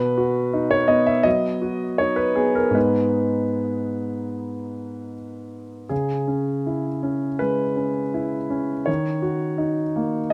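A warm concert grand piano plays alone throughout this short 10.3-second passage cut from a longer neoclassical minimalist piece, sounding intimate and up front with audible action noise, deep bass and long sustain. The mood is wistful and reflective, moving at a rubato pace of roughly 74 to 84 BPM in 4/4, in C# dorian with tuning set to A4 = 441 Hz. The harmony passes from B to G#m, then C#m at 5.9 seconds and D#m at 8.9 seconds, with the piano ranging from G#2 up to E5. The small room ambience and rough home-demo mix give the sound a natural, unpolished character.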